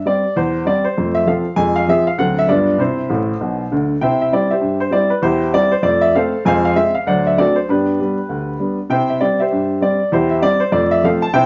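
A clear, open baby grand piano sits up front, ringing with long sustain across a span from A1 to A5 as it plays a playful, exuberant stride jazz solo at a brisk 197 BPM in 4/4, swinging in C major. A short fill at 3.1 s closes the first phrase before the same section returns at 4.0 s, each pass moving through C/E, F, Fm and D7 before resolving through G to C. The room is a large studio with moderate reverb, a live feel, vinyl crackle and a rolled-off top end, and the passage is cut from a longer piece.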